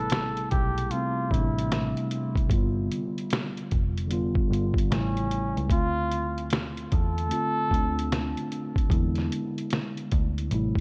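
An echo-heavy mix with light reverb and a dull top end frames this reflective, melancholic lo-fi hip hop excerpt in A minor at 75 BPM, swung on the 16ths and tuned slightly flat. A compressed, pitched-down, muffled sampler drum kit sits up front with a thumpy kick and fat snare, under a round, foam-muted picked bass and a mellow, clean tine electric piano moving from Am7 through G7 and Dm7 to E7. A cup-muted trumpet plays a soft, veiled jazz solo with light vibrato, filtered and touched by analog delay like the piano, before dropping out at 8.5 seconds.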